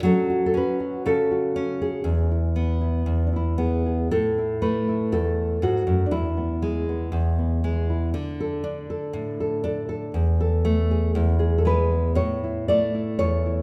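A solo nylon-string guitar opens at once on an F#m chord, its thumb-plucked tone warm and deep in the classical manner, sitting up front in the sound. This is pastoral, nostalgic folk played fingerstyle in a straight 4/4, ranging from E2 up to D5. The harmony moves from F#m to E, then the phrase begins again at 4.1 seconds on A5, passing through E, D5 and a suspended Esus4 before settling on a closing Aadd9. The guitar rings out into a lush concert hall reverb with a long tail, lending the plain fingerpicked lines a spacious, reflective glow. Cut from a longer piece, the recording runs to 13.6 seconds.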